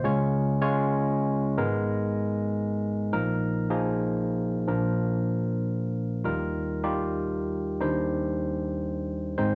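Intimate and heartfelt, this short folk passage moves at an unhurried 77 BPM in a straight 4/4. A single tine electric piano carries the whole piece alone, spanning from deep bass notes up into its upper register. Its tone is bright and barky yet clean, played through a combo amp and placed up front in the mix. The chords step from Db through Abmadd9, Bbsus4 and Bb to Ebadd9, settling on Cmadd9/Eb at 7.8 seconds. A generous, wet reverb from a large studio surrounds the piano and gives the 9.6-second fragment, cut from a longer piece, a roomy glow.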